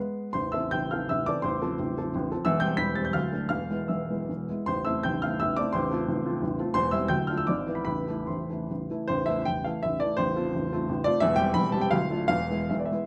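A warm baby grand piano plays alone throughout this short fragment of a romantic classical piece, a triple-time dance built on dotted rhythms. The mood is wistful and capricious, and the elastic rubato lets the pulse stretch and tighten freely. The instrument sits up front and sounds intimate, with the mechanical noise of its action clearly audible beneath the notes. Its range reaches from the deepest bass up into the high treble. The minor-key harmony circles through the same chord pattern several times, and a new passage begins around 9.1 seconds before the fragment breaks off at 13.1 seconds. Close, detailed microphones and a light touch of reverb keep the sound clear and personal.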